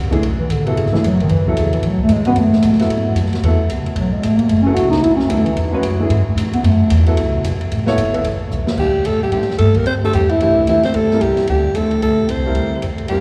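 Swinging at 224 BPM in 4/4, this cool, intense modal jazz excerpt in B dorian opens with a woody, thumpy pizzicato upright bass and an intimate baby grand piano with audible action noise, while a dark, boomy-kicked drum kit with dark cymbals plays beneath a subtoned bass clarinet solo full of scooped notes, until a drum fill at 8.5 seconds leads to a raspy, growling alto saxophone taking the melody at 8.8 seconds, all bathed in a cavernous cathedral reverb.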